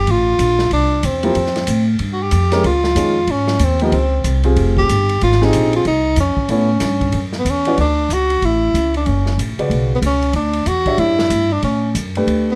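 A present tenor saxophone with vibrato and plate reverb carries the melody in this hypnotic, searching modal jazz piece, swung and cut from a longer performance, with the harmony moving through Fmaj9, Dbmaj9 and A9 before reaching Dmaj9 at 7.8 s. A woody, thumpy upright bass sits up front beneath an intimate grand piano that enters at 1.2 s with audible action noise. A quieter small-room jazz kit adds a boomy kick, a medium-tuned snare and dusky cymbals with a rolled-off top.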